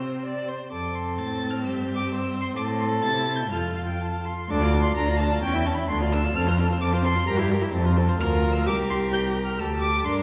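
A lively, cheerful classical-period string quartet movement in a quick 2/4 at 129 BPM, cut from a longer piece, moves from F major into D minor at 4.5 s, with a smooth, even first violin carrying the high melody, a warm, focused second violin on the inner line, a rich viola adding accompaniment and an expressive, up-front cello anchoring the bass with soft attacks and portamento, all four bowed with vibrato and heard from further back in a reverberant scoring stage.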